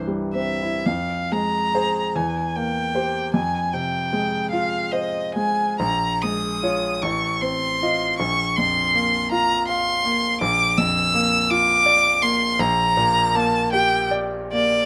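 Serene and tender, this romantic classical duo for violin and grand piano unfolds in F minor at a slow, rubato pace of roughly 36 to 56 dotted-quarter beats per minute in 6/8. A single bowed violin carries the melody within a range of D5 to E6, its tone rich, smooth and even, colored by vibrato and placed up front. The grand piano accompanies across a broad span from A1 to F5, sounding clear and natural, also close at hand but sitting a little beneath the violin. The harmony moves from F minor through C7/E, Bbm7 and F7/A before settling toward Bb and Gm/Bb near the close at 12.6 seconds. Light reverb gives the pair a gentle sense of space in this short excerpt cut from a longer piece.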